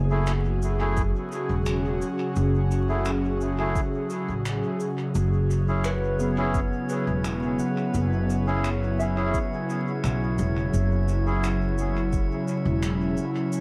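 Ambient dub at an unhurried pace, spacious and meditative, heard as a short cut from a longer piece with light room ambience, cassette tape character and vinyl crackle. An airy, breathy pad with chorus sustains F#m9 moving to C#m over a woody pizzicato upright bass up front and an overdriven electronic kick, while reedy melodica stabs carry sampler grit and dub echo and soft cabasa and finger snaps echo beneath. From about 5.5 seconds a glassy drifting-harmonics texture enters, followed shortly by a thumb-plucked concert harp playing ringing arpeggios through analog delay in the background.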